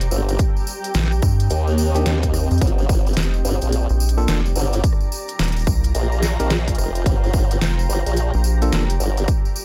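Glitch hop with a gritty, funky swing, where a rubbery square bass and a chorused formant-sweep wobble bass sit up front beside a punchy electronic kick, while a tape-warm dubstep kit of deep snare, rim click and crisp hats, a jingly tambourine and a cloudy granular pad pumping under its own reverb fill out the groove, and a clean tine electric piano arrives at 1.9 s with dub-echoed stabs over Cm7, Gm7 and F7sus4 changes in this dry, short excerpt.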